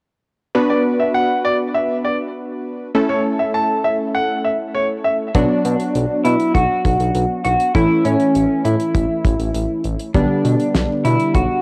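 Nocturnal and melancholic, this 100 BPM synth-pop excerpt in B minor opens on round, detuned analog keys with chorus and a filter sweep, joined by a brilliant grand piano line with tape echo, before a slightly broken-up, lo-fi electric guitar takes the melody at 5.3 seconds over a smooth, nasal synth bass and a dry 70s drum kit with a fat snare and tight kick, moving through Bm, A and G/B as a home cassette recording in a modest booth ambience.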